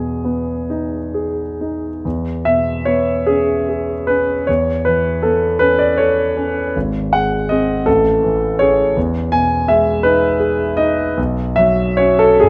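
A clear, up-front concert grand piano opens on an Emaj7 chord in this hazy, serene fragment of impressionist solo piano in E major, drifting in a rubato 6/8 at roughly 43-57 BPM by the dotted quarter through E6, Aadd9/E, G#, Amaj7 and back to Emaj7 before reaching Bsus2 at 11.2 seconds, its natural tone and deep bass spanning G#1 to G#5 inside a moderate recital-hall reverb caught by close, detailed microphones.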